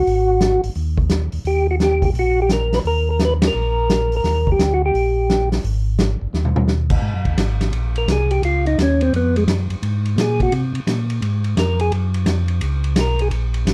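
A dark production with light reverb frames this greasy, soulful soul jazz organ trio excerpt, swinging at 172 BPM in Ab mixolydian. A round, percussive tonewheel organ with third-harmonic percussion carries the melody through a slow rotary speaker, while a mellow second organ voice with vibrato and key click holds down the bass. Up front, an acoustic vintage drum kit with a punchy kick, fat snare and dark cymbals pumps in a small room, hitting a band accent at 3.4 seconds and a fill at 6.3 seconds before the organ solo opens at 7.0 seconds.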